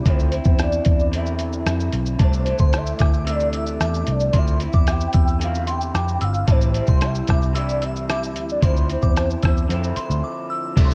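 Indie pop with a bedroom-pop haze, this dreamy, nostalgic clip from a longer piece moves at 112 BPM in a straight 4/4, tuned slightly sharp to A4 = 441 Hz. A soft, octave-layered synth lead carries the melody with a round, full tone, shimmering under tremolo, ensemble chorus, tape echo and cassette wear. Beneath it, an electric guitar through a small old amp adds slightly broken-up, fingered accompaniment, lushly chorused and wobbling with vibrato, while a vintage foam-muted picked bass gives a dark, punchy foundation with transformer saturation. The lo-fi sampler-style kit sits up front, pitched down and muffled, with a thumpy kick, rim click, hi-hat, shaker and crash. A glassy FM bell enters at 2.2 seconds as a crystalline second line, phased and echoing with a long release, and the harmony drifts through Dm9, C69 and Am7 before a brief break at 10.2 seconds, all wrapped in light digital ambience on a home cassette recording.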